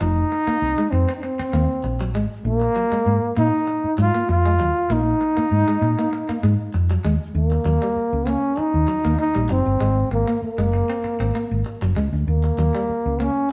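Drenched in the reverb of a stone room where the band plays live together, this playful, strutting funk fragment at 98 BPM puts a close-miked jazz trombone up front, its soft attack, vibrato and scooped notes carrying a solo melody over a picked, twangy electric guitar riff at the edge of break-up and a dark, round, amped hollow-body short-scale fingered bass, also up front, as the harmony moves from Fm7 through Bb7sus4 to Eb7#9 at 7.3 seconds and settles on Ebm7.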